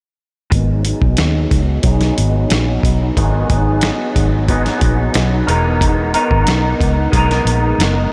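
A lo-fi electric guitar through a small old amp sits up front, slightly broken-up and compressed, its chorus, vibrato and a filter sweep colouring the chords from 0.5 to 8.1 seconds as they move from G#m7 to Emaj7#11 at 5.5 seconds. Beneath it, a dark, foam-muted fingered electric bass gives round, punchy low notes, while a gritty, sampler-style drum kit with a thumpy kick, medium-tuned snare and hi-hat sits close and compressed. This mellow, lonely bedroom pop excerpt in G# minor moves at a straight 91 BPM in 4/4, and a huge ambient reverb soaks the mix in a dreamy haze.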